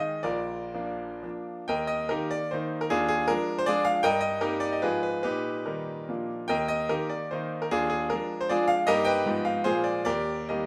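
Dotted rhythms drive this romantic triple-time dance in 3/4, played with rubato so the tempo flexes between 115 and 167 BPM. It is a short excerpt of classical solo piano in Eb major, tuned to A4 = 441 Hz, and it carries a proud, rustic character. A brilliant concert grand sits up front, spanning deep bass notes down to Bb1 and climbing as high as G5 with a natural tone. After a brief opening gesture on Bb, a new section begins at 1.7 seconds on Eb. The harmony moves through a diminished chord over an Eb bass, then Eb/G, a half-diminished Fm7b5/Ab, and Eb/Bb, cycling through this progression twice before closing firmly on Eb at 10.1 seconds. A moderate large-studio reverb gives the instrument an open sense of space, and the recording is cut from a longer piece.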